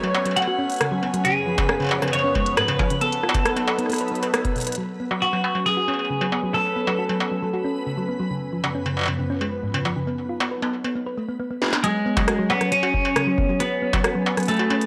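IDM at 136 BPM in F# melodic minor, this melancholic, glitchy excerpt from a longer piece moves through F#madd9, C#7/F# and B7/F# chords over a steady 4/4 pulse. A twelve-string electric guitar carries the melody up front, its twangy, picked tone roughened by vintage 12-bit sampler grit and analog delay, and it drops out between 8.0 and 11.8 seconds. Beneath it, a swirling, detuned analog pad holds sustained chords through phaser and chorus, while a tine-like, thumb-piano-style synth pluck spins warbling arpeggios that take a filter sweep from 4.8 to 11.8 seconds. An overdriven industrial drum kit of crisp hats, rim clicks, a clanging snare and struck metal drives the groove, joined in stretches by a deep electronic kick, with a band accent at 4.3 seconds and drum fills at 4.6 and 11.6 seconds. A reversed, dreamy texture swells softly in the background until 11.0 seconds, and the whole has a dry, gritty hardware sound with a cassette-tape character and light digital ambience.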